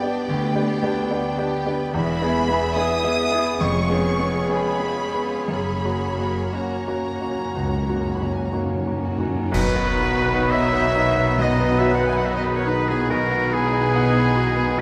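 Lush and passionate, this romantic classical excerpt for piano and orchestra unfolds with rubato as a clear, up-front concert grand piano shares the melody with a vibrato-laden symphonic violin section, while a closer violin section adds an expressive portamento second line and rich violas, cellos and double basses supply smooth bowed accompaniment and bass; hard-mallet timpani, dark cymbals and bass drum enter at 5.5 seconds, and at 9.5 seconds a band accent brings in a bright oboe, distant clarinet, airy flute, mellow French horns, background trumpet stabs and roomy trombones, with the whole scene set in a moderate scoring-stage reverb.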